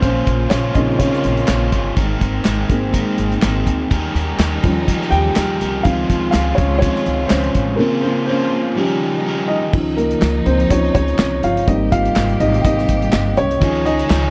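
Anthemic and hopeful, this piano-driven pop excerpt moves at 124 BPM in 4/4 with a light swing on the sixteenths. A dark, boxy upright piano sits up front and takes a solo across both sections, its action noise audible and its notes ringing with long sustain over chords such as Bbmadd9, Abadd9, Eb7 and Dbmaj7. Beneath it, a pizzicato upright bass gives a woody, thumpy low end, while a modern drum kit with a tight kick, medium-tuned snare, hi-hat, handclaps and crash cymbal sounds smooth, with a rolled-off top. An overdriven semi-hollow electric guitar plays a picked riff, dropping out at 10.2 seconds, shortly after the second section arrives on Dbadd9 ahead of Abmaj7, then returning at 13.6 seconds. A lush bowed string section holds soft-attack chords with vibrato in the background, and the recording is dry and close, in the manner of a 1970s studio session.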